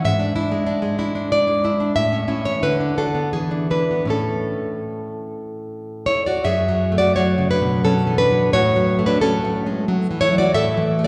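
A romantic piece for solo classical guitar, this short passage cut from a longer work has a nostalgic, warm mood and moves in 3/4 with a rubato feel, its tempo drifting between 74 and 96 BPM. The nylon-string guitar, fingerpicked and placed up front, sounds bright and acoustic with the crisp ring of fresh strings, ranging from F#2 up to E5. It opens in A major, passing from E7/G# through A, Bm/D and E7 before settling back on A. At 6.5 seconds the music turns to F# minor, resting on F#m and then F#m/A, which deepens its wistful character. The guitar sits in a resonant church or concert hall, where a long, wet reverb trails each note and lends the performance a spacious, lingering glow.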